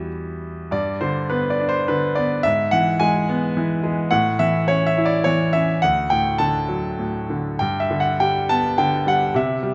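Classical solo piano in G major, lyrical and brooding with a bittersweet edge, moving in a rubato 3/4 at roughly 96-109 BPM in this fragment from a longer piece. A brilliant concert grand sits up front, its smooth, vintage tone reaching from deep bass to a bright upper register as the harmony passes from E minor with an added ninth through G, E over G sharp, A and D before settling back on G at 7.6 seconds. A wet recital-hall reverb surrounds the playing with a lingering, spacious tail.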